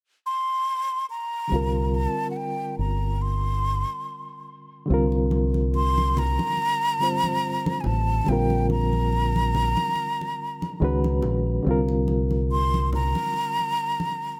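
A breathy concert flute carries the melody from 0.3 seconds, its tongued, expressive lines sitting up front with vibrato and lifted highs in this soulful, introspective R&B and neo-soul piece, which is cut from a longer work. At 1.5 seconds a reedy, clean electric piano joins with a fast tremolo, and a deep dub fingered electric bass enters alongside it, dark, round and punchy, playing direct and amped in the low register. The harmony rests on Csus2, then moves through Bb6 and Dbsus2 before returning to Csus2. Congas arrive at 5.1 seconds, low-tuned and damped with a thick-skinned, warm tone, sitting in the background with a live room feel. The groove moves at a slow 71 BPM in 4/4 with a light swing on the sixteenths, and a light studio reverb surrounds the recording.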